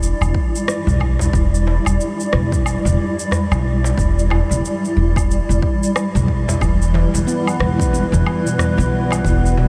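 Earthy and mystical, this organic downtempo excerpt moves at 91 BPM in E minor with a 16th-note swing, resting on a single Em7 chord inside a dreamy, reverb-soaked space. Up front, a cloudy, wave-folded granular pad holds sustained chords and a woody, thumpy pizzicato upright bass anchors the low end, both pumping with sidechain, while an overdriven electronic kick, a gritty shaker, woodblock and rim click, and a deep clay-shelled darbuka played with hard hands in the background drive the groove. At 6.6 seconds a ringing, stainless-steel handpan enters with bright arpeggios struck by sharp finger strokes, trailing a diffuse ambient delay.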